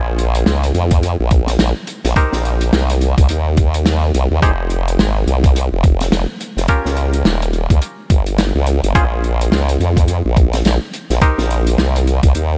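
A chorused, tube-saturated sawtooth wobble bass with a sweeping formant filter opens this gritty, swaggering, swung glitch hop excerpt up front, joined almost at once by a distant, roomy soul drum kit of hi-hat and medium-tuned snare, then by a compressed, pitched-down, thumpy electronic kick from 0.9 seconds, and from 2.2 seconds by bright, twangy muted clav stabs played through a combo amp with sidechain pumping and a diffuse ambient delay, over a minor-key chord progression in light small-room ambience.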